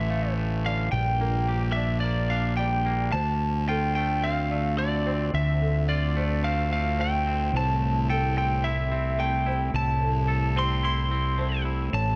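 Post-rock at 109 BPM in a straight 4/4, cinematic and melancholic, settling into D minor at 3.1 s as the harmony moves from Dm7 to Am7/C. An up-front, slightly broken-up lead guitar carries the melody through analog delay. Beneath it sit a bright, clean picked electric guitar playing arpeggios, a round, punchy fuzz bass, and a muffled felt-muted upright piano with audible action noise in the background, while from 4.1 s a very quiet, detuned organ-like pad with a slow attack adds sustained chords inside a light digital ambience.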